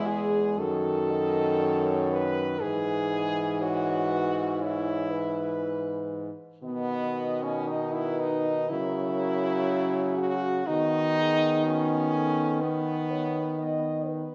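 Classical and lyrical, this serene, tender passage for horn quartet moves at an unhurried 56-63 BPM in 4/4 with a rubato feel, unfolding in E major from E through F#m6 and B to a close on B/D#. A mellow horn carries the melody from the background while a clear second horn with light vibrato sits up front, a third clear horn fills in the accompaniment, and a warm, soft-attacked bass horn anchors the low end with a distant, roomy quality. The quartet is heard from further back in a recital hall whose reverberant wash surrounds the blend, and the passage is cut from a longer piece.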